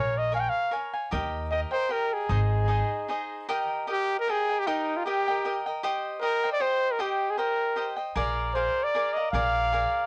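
Mexican folk mariachi in a festive, proud 3/4 at 154 BPM with a light swing, moving from Ab major into Eb major at 3.5 s in this fragment cut from a longer piece. A clear, soft-attacked trumpet carries the melody up front in a classical solo style, over a crisp, picked cavaquinho whose accompaniment carries a cassette-tape coloring. A woody pizzicato upright bass on steel strings plays until 2.8 s and returns at 8.2 s, all set in light reverb on a homey cassette recording.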